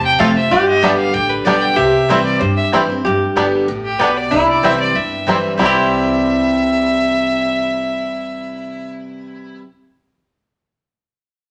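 A clear, focused fiddle with light vibrato leads this lively, rustic bluegrass excerpt at 189 BPM in C major, sharing the melody with a bright, twangy banjo played with fingerpicks. A nasal, metallic lap resonator guitar with slide adds a second line, while a full-bodied picked dreadnought guitar sits up front in the accompaniment, a woody mandolin adds stabs in the background, and a dark pizzicato upright bass anchors the low end. The fiddle drops out at 8.9 seconds as the rest carry on in a large, wet studio reverb.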